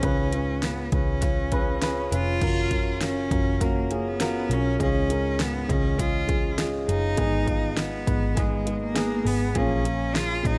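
Warm and uplifting, this piano-driven pop piece, cut from a longer work, moves in a straight 4/4 feel. A bowed cello carries the melody, clear and focused with vibrato, sounding close and up front as a single player. Beneath it, a dark upright piano plays mellow, woody accompaniment with long sustain, also placed up front, while a vintage muted electric bass adds a round, foam-muted low line with an amped edge. A layered electronic deep house drum kit, overdriven, drives the groove with a punchy kick, fat snare, metallic hi-hats and crash cymbal. The harmony passes from Db7 through Gbmaj7, Db and Abm to Bbm7, with a brief opening section giving way to a second at 2.4 seconds, all set in light reverb and digital ambience.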